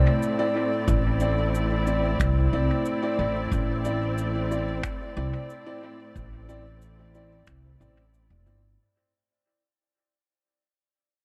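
Muted, veiled strings bowed con sordino with vibrato open this meditative, hazy ambient dub fragment at 91 BPM on a Cadd9/A chord, alongside boxy upright piano stabs trailing dub echo and a woody pizzicato upright bass up front, while dark cabasa and finger snaps sit in the background with their own dub echo from 0.2 seconds, an overdriven analog kick thuds in from 0.9 seconds, and the whole echo-heavy mix fades out across its length.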